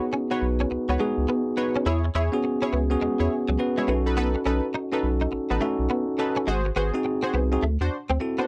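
A bell-like tine electric piano sits up front in this bouncy, confident R&B excerpt, carrying the accompaniment at 104 BPM in 4/4 with a 16th-note swing. Beside it, a punchy, funky polysynth built from detuned sawtooth tones stabs out comp chords, colored by a filter sweep, chorus and slapback echo. A direct-recorded clean electric guitar, picked and compressed with an ensemble chorus, plays a riff from 0.1 seconds. A round analog bass, deep and dark with a fast attack, joins at 0.4 seconds and holds the low end up front. The harmony moves from C#7sus4 through E6 and B7 to G#7 and D7, all captured as a dry, close 1970s-style studio recording with light reverb.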